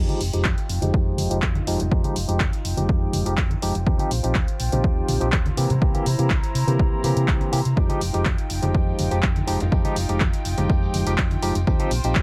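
An overdriven, up-front electronic kick drives this funky, groovy filtered disco house excerpt at 123 BPM in F minor, entering at 0.5 s alongside punchy, tape-toned drum machine handclaps and hi-hat, saturated hard-hand congas and tambourine in the background, a dark, round hollow-body fingered bass, a barky electric piano with phaser through a combo amp, and distant, floating bowed chamber strings, all in a dry mix with sidechain pumping on the piano, strings, bass, hats and percussion and a filter sweep running the full 12.2 seconds over chords moving from Fm9 through Eb69 and C7.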